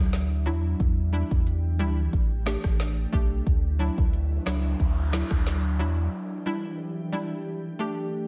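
A straight 4/4 dancehall groove with a sunny, bouncy mood drives this short excerpt cut from a longer piece, carried by an electronic afro-pop drum kit with a deep kick, woody snare, rim click and crisp hats that sits up front with a tape-warm, small-room character before dropping out at 5.6 seconds. A round, sine-like sub bass anchors the low end, up front and mellow, until it stops at 6.1 seconds as the arrangement moves into a break. Above it, a hollow, detuned square-wave pluck with chorus sketches decaying accompaniment figures, while a glassy FM pad swathed in ensemble chorus and its own reverb holds ethereal, full-bodied chords that pump against the beat and ring on to the end. The harmony cycles through Dadd9, Em7 and A7sus4, and an electronic noise sweep moves through the background from 4.0 seconds. The whole mix sits in light digital ambience.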